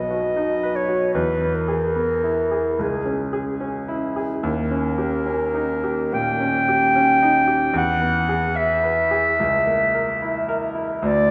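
Elegiac and solemn, this fragment of a romantic classical duo moves at 74 BPM in 4/4 with a free, rubato feel, tuned to A4 = 437 Hz. A mellow clarinet sings the melody up front between G#4 and G5 throughout its 11.3 seconds, while a bright, worn concert grand piano with a deep bass supplies the accompaniment, moving through chords from B and E to C#m, D#7 and an A#dim/C#. A long, wet church reverb surrounds the pair, giving the sound the spacious glow of a church or concert hall.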